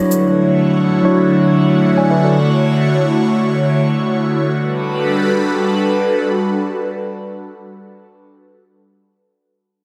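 In free time, this soulful, warm amapiano excerpt in G lydian (tuned to A4 = 439 Hz) opens with a mellow, clean tine electric piano sitting up front until 2.5 seconds beside an airy, breathy, detuned pad with chorus and phaser that sustains soft chords from Dmaj9 to Gmaj9 at 4.5 seconds and holds until 8.1 seconds, all set in light digital reverb with a dense, heavily limited modern master.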